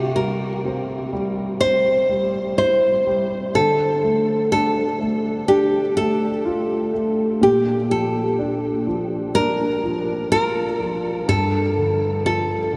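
From the first moment, a bright, fingerpicked nylon-string guitar carries a classical-toned melody over an intimate concert grand piano, whose deep bass, natural tone, audible action noise and subtle chorus sit up front beside the guitar's delay, in this emotional, melancholic D minor pop ballad excerpt at a slow 62 BPM in straight 4/4, moving from C to Dm to Bbmaj7 and into a third-less G7 at 11.3 seconds, the whole dreamy mix soaked in a huge ambient reverb with an 8.2-second decay.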